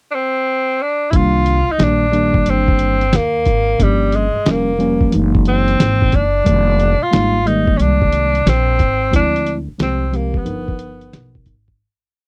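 A clear tenor saxophone opens alone with a short pickup, its light vibrato and scooped notes carrying a free, vintage-toned jazz melody up front in this mellow, cool jazz-hop piece in C minor at 90 BPM with a swung sixteenth-note feel. At 1.1 seconds a muffled, compressed, pitched-down sampler-style kit arrives with a thumpy kick and fat backbeat snare in a boom-bap beat, joined by a woody pizzicato upright bass walking with ghost notes and chromatic approaches, and a worn, slightly out-of-tune tine electric piano pushing rootless chords with grace notes through changes such as Cm9, F#13 and G7alt. The dry, close 1970s-style studio sound keeps every part intimate until the fade-out that begins at 9.1 seconds.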